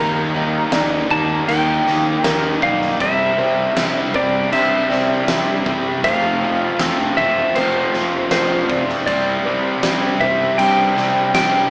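A straight 4/4 pulse carries this hopeful, cinematic post-rock passage, cut from a longer piece, where a clean, twangy lap steel guitar sings the melody over a background of a felt-muted upright piano's boxy, intimate arpeggios, an overdriven electric guitar riff, a thick fuzz guitar riff and a round, punchy fuzz bass. An oversized low-tuned drum kit joins at 0.7 s with a fat snare, punchy kick, dark cymbals and a pumping stone-room ambience. The band sounds as if playing live in one room, washed in a large studio reverb yet heard through a small speaker, moving from Ebmaj7 to C to Fmaj7 and back to C.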